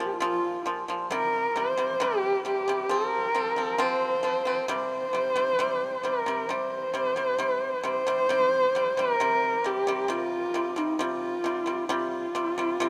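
Vast and windswept, this brief excerpt of Mongolian traditional music moves at a slow 67 BPM in straight 4/4. A husky, up-front horsehead fiddle carries the melody with vibrato, portamento and a soft bowed attack, while a dry, percussive pipa played with fingerpicks supplies arpeggios beneath it. Both instruments sit inside a huge ambient reverb with a 6.3-second tail, and the music shifts into a new section at 8.3 seconds.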